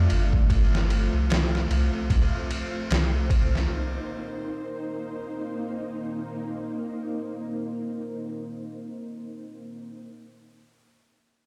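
A slow trip hop groove at 75 BPM in 4/4 sets the pulse, with a swung sixteenth feel carried by a sampler-style drum kit of thumpy kick, medium-tuned snare and ride cymbal that sounds pitched down, muffled, compressed and overdriven, sitting up front. Beneath it a warm, round sine sub bass with a fast attack holds deep, mellow sustained notes between G1 and C2, and both the bass and drums stop at 3.7 seconds. A vintage string machine voicing cellos plays dark, full-bodied sawtooth chords with a sub octave, soft attack and ensemble chorus, moving from Dm to Cm7 in C dorian and evolving as it sustains until 10.1 seconds. The mood is melancholic and cinematic. The sound suggests a big system playing into a bare room, wrapped in a large studio reverb, and this passage is cut from a longer piece.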